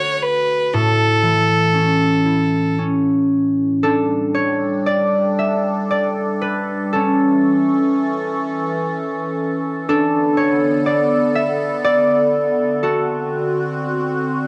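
Wistful and nostalgic, this slow Celtic folk air drifts in a rubato 3/4 at about 56-62 BPM in A mixolydian, opening with a rich, focused solo fiddle melody with light vibrato over mellow, ringing fingerpicked concert harp until the fiddle stops at 2.8 s; a harp solo follows from 3.8 s, and at 4.0 s a bright, detuned, chorused wavetable pad with a slow attack enters softer beneath it, its evolving, morphing sustained chords set in a moderate echo-chamber studio reverb.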